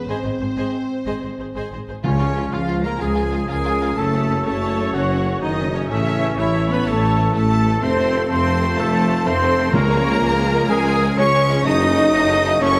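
Rich, expressive bowed double basses anchor this soaring, heroic film-score passage, joined by warm cellos sitting in the background and a mellow tuba, all carrying the bass line at 125 BPM in a straight 12/8. Above them, a lush violin section spins a focused second line in a high register, while violas fill in smooth accompaniment and a very quiet, distant first violin section carries the melody with vibrato. Soft French horns hold sustained chords from the opening, and at 2.0 seconds the full brass and woodwinds arrive with a very quiet trombone section, a dark clarinet and an oboe adding further lines. A tight trumpet section punctuates with soft-attacked stabs. Close, dry timpani strikes with hard mallets mark 2.0 and 9.7 seconds. The harmony moves through G#, Db, Gbm, A and F before returning to Db and Gbm, and a moderate scoring-stage reverb gives this excerpt, cut from a longer piece, an expansive orchestral sense of space.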